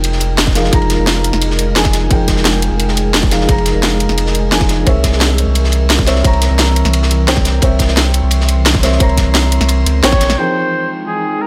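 A tight electronic kick and two layered drum kits, one with a cracking snare and the other gritty and saturated with a rolled-off top, drive this lush, rolling liquid drum and bass at 174 BPM in F minor, moving from Fm11 to C7b9 and back. A thick, saturated sub bass sits up front beneath a soft, felt-muted upright piano with audible action noise and delay, while a glassy FM pad with ensemble chorus pumps in the background. A clear flugelhorn enters with digital delay at 10.0 seconds on a band accent, playing a short solo line, and the beat drops away after 10.4 seconds in this clip from a longer piece.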